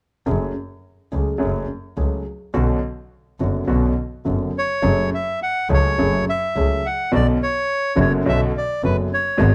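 Close, detailed microphones and a light reverb give this short tango passage, cut from a longer piece, a sultry yet dramatic air, its rubato pulse breathing freely over a minor chord progression with added ninths. A worn, natural grand piano sits up front in accompaniment beside a single bowed double bass whose biting, nasal tone carries light vibrato and an airy, earthy edge. At 4.6 seconds a reedy, bright bandoneon steps forward with the melody for the second half.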